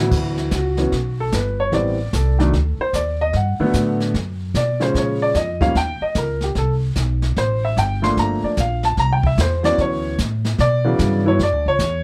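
A brisk swing feel in 4/4 drives this short jazz piano trio passage, cut from a longer piece, with a loose, swinging lilt and a warm mood throughout. The upright piano carries the melody as a solo from 0.1 seconds to the end, its woody, natural tone sitting up front and ranging from deep bass notes to bright upper registers. Beneath it, the pizzicato upright bass has a thumpy, steel-strung character and also sits close in the mix. The brushed drum kit enters at 0.1 seconds, mixed lower, with dark cymbals, a medium-tuned snare, a boomy kick and hi-hat giving a small-room, acoustic texture. The harmony moves through rich extended chords, from Dmaj13 through Am7, Gmaj9, Bbm7 and Eb7, before returning to Dmaj13 at 9.8 seconds, all wrapped in a light reverb.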